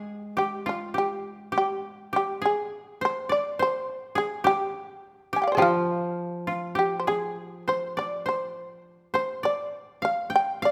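The recording sits in a moderate recital hall reverb that gives the plucked strings a natural, open space. This is a calm, austere excerpt of Japanese traditional music, cut from a longer piece, moving at a slow, rubato 51 BPM in 2/4 and centred on G in the sen mode. A shamisen carries the melody, spanning F4 to Ab5, its plectrum-plucked tone percussive, buzzing and powerful, standing up front above the other parts. One koto plays a second line in a similar register, from F4 to G5, its fingerpicked sound bright, dry and woody, while a second koto supplies a low accompaniment between F3 and Ab3. The low koto stops at 8.9 seconds, leaving the shamisen and the upper koto to finish the passage together at 10.7 seconds.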